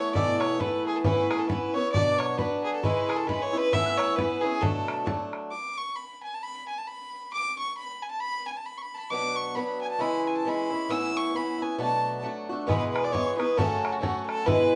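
A lively Celtic polka in 2/4 at 134 BPM, swung on the eighths, this short cut from a longer piece in B dorian feels spirited and wild. A single bowed fiddle carries the melody up front with a nasal, earthy tone, light vibrato and a smooth top, playing throughout the 14.8 seconds. A picked acoustic guitar, boxy and up front with audible finger squeak, picks out swing-style accompaniment through chords like Aadd9, Bm and C#m, drops out at 5.5 seconds and returns at 9.1 seconds, leaving the fiddle briefly unaccompanied. In the background a mellow, hollow metal tin whistle adds an airy second line with crisp chiff and vibrato, joined by a damped, tight bodhran with a vintage, band-limited thump; both fall away after the opening and come back at 12.7 seconds as the tune moves into a new section over E and F#m. The band sounds as if playing live in one room, wrapped in a short, wet studio reverb.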